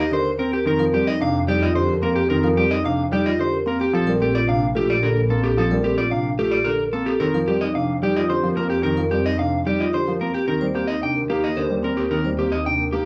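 An up-front electric guitar, dark and slightly broken-up, picks the melody through this bright, propulsive excerpt of minimalist classical pattern music in 3/4. A vibraphone played with soft mallets and motor off rings out mellow, metallic arpeggios, while a vintage baby grand piano adds smooth accompaniment with long sustain, and a bowed studio double bass section supplies a lush, expressive low line with vibrato. Light reverb surrounds the parts as the harmony moves between Eb6, F9sus4 and Bb69.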